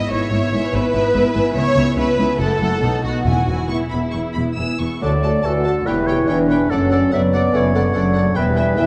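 A lush violin section carries the melody in this lively, spirited classical excerpt at 143 BPM in 4/4, played with rubato, while a second, more distant violin line with portamento, expressive violas and a ringing harp playing arpeggios sit above a rich, bowed cello and double bass foundation. A round timpani note sounds at 3.2 seconds, and from 5.0 seconds the key moves from E major to D major as a mellow French horn section adds sustained chords, joined by a clear oboe, a pure flute and a roomy bassoon in the background. A moderate scoring stage reverb gives the orchestra a sense of space.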